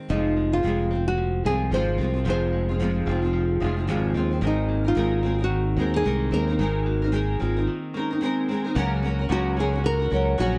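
This easy-going, heartfelt acoustic pop excerpt moves at 111 BPM in 4/4 with a lightly swung sixteenth-note feel. It opens on Fm and moves to Abadd9. Two fingerpicked nylon-string guitars carry the core in a classical manner: a double-tracked part plays the accompaniment and another plays the melody. One guitar sits up front with a bright edge and audible finger squeak, while the other is full-bodied. A growly, punchy fingered electric bass drives from the front of the mix, and a clean, compressed electric guitar, recorded direct, picks arpeggios in the background. From 2.8 to 8.7 seconds a mellow, ringing vibraphone played with soft mallets adds a second line. After a short break, a lightly overdriven tonewheel organ enters at 8.8 seconds with sustained chords through a slow rotary speaker over Gb/Db, all captured in a dry, close 1970s-style studio sound.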